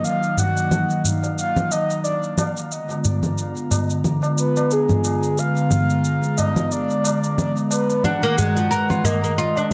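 A swung 4/4 groove at 90 BPM, with its sixteenths pushed at 56%, is carried by electronic shaker and congas that sit up front, overdriven, in a small room with dub echo. A low-tuned, ringing acoustic tabla joins at 0.4 seconds, trailing its own dub echo. This meditative organic downtempo piece sits in Bb phrygian dominant, tuned to A4 = 442 Hz. A dark, detuned sawtooth pad with a slow attack and chorus holds sustained chords through Ebmadd9 and Bb7b9, with a filter sweep running across it and a moving notch shaping its tone. Above it, a breathy, flute-like synth lead carries the melody with a soft attack, vibrato, a sub octave and a noise layer, touched by subtle chorus and analog delay. At 8.0 seconds, as the harmony moves to Absus2, a woody, fretless oud enters up front with deep, plectrum-plucked arpeggios on double strings, in an echo-heavy mix bathed in moderate spring reverb and digital ambience, cut from a longer piece.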